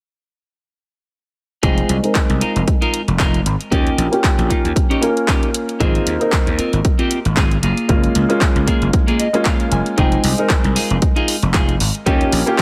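A dry mix opens at 1.6 seconds, where every part enters together in a cut from a longer nu-disco piece in F minor at 115 BPM, carried by a 4/4 groove with a light swing on the sixteenths. The mood is cosmic and sensual, built over chords moving from Fm7 through Eb7, Ab6 and Gbmaj9 before returning to Fm7. A punchy, overdriven electronic kick sits up front beside a house kit of handclaps and hi-hat, both layered and re-recorded in a large room. The gritty slap bass is bright, growly and amped, driven hard with overdrive and tube saturation to share the front of the mix with the kick. A warm baby grand piano supplies accompaniment through sidechain pumping, delay and a low-pass filter that sweeps across its whole span, while a dark, clean, picked electric guitar plays a riff coated in lush chorus and adds a fill from 8.9 to 10.0 seconds.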